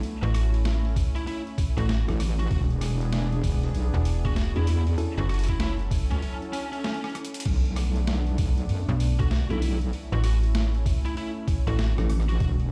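Heard through a large studio reverb, as if played on a big sound system in a bare room, this glitch hop excerpt has a playful, gritty mood and rides a swung 97 BPM groove in 4/4. A pitched-down, sampler-style boom bap kit plays from the start, its high-tuned snare, rim clicks, hi-hat and crash carrying a compressed, grimy edge, and an overdriven, thumpy electronic kick joins it up front at 1.0 seconds. Two basses sit forward in the mix: a snappy FM bass with a metallic attack, and a heavy, saturated wobble bass with chorus that arrives at 2.1 seconds. Above them, a bright, picked lead guitar with overdrive and dub echo carries the melody, while a smooth, detuned sawtooth pad with chorus and sidechain pumping holds sustained chords through A, E7, F#m7 and Bm7 before returning to A. A clean, bell-like tine electric piano adds stabs in the background, pumping and echoing, and a short break at 6.2 seconds ends in a drum fill.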